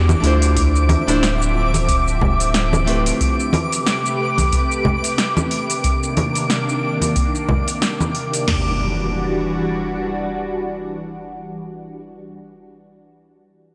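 This sunset chillout track moves at a smooth, relaxed 91 BPM in E phrygian, with a loose sixteenth-note swing and a lush hall reverb over a blown-out, overdriven mix. A silky string machine holds sustained chords throughout, colored by phaser and ensemble chorus. Underneath, a round, dark analog bass sits up front before dropping out at 3.1 seconds, while a bright, fingerpicked nylon-string guitar adds delayed accompaniment in the opening moments. Two drum parts share the groove: a dry, tape-toned vintage rhythm box with a deep kick, crisp snare, toms and crash, and a layered deep house kit with metallic hats, shaker and a punchy, overdriven snare, joined by ringing congas played with soft hands. A twinkling granular texture adds octave-up shimmer high above. An electronic impact opens the piece, and a sub drop arrives at 8.5 seconds as the drums and sparkle fall away. The strings carry an Em9 chord alongside the lingering sub drop until they stop at 11.9 seconds in this cut from a longer piece.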